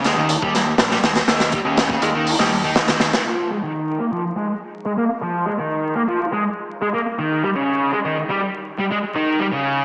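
Raw and gritty, this short breakbeat cut at 122 BPM in F minor opens on a crunchy, saturated drum kit with a tight kick, medium-tuned snare and hi-hat, joined by a bright, punchy picked electric bass, both dropping out at about 3.2 seconds. A thick, double-tracked fuzz guitar riff runs throughout, its distortion roughened by vintage 12-bit sampler grit and dub echo, and from 3.3 seconds a filter sweep works on it as the harmony moves from Fm7 to an Eb7 with the third omitted. A wet digital room reverb, heavy radio-style compression, vinyl crackle and a small-speaker tone give the whole fragment a lo-fi, broadcast feel.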